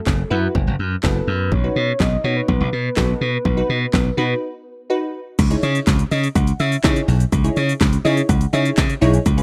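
A rough home-demo mix with digital ambience carries this driving, energetic dance-pop excerpt in C# minor at 124 BPM, where a punchy house drum kit with a cracking snare, handclaps and shaker sits up front beside a bright, glassy slap bass and crisp, detuned wavetable chord stabs that both pump with the sidechain, while a dark, round octave-layered synth lead with chorus, vibrato and digital delay carries the melody until 4.9 seconds, and after a short break the drop lands at 5.4 seconds on C#madd9, bringing in a gentle background pluck with chorus and delay at 5.6 seconds.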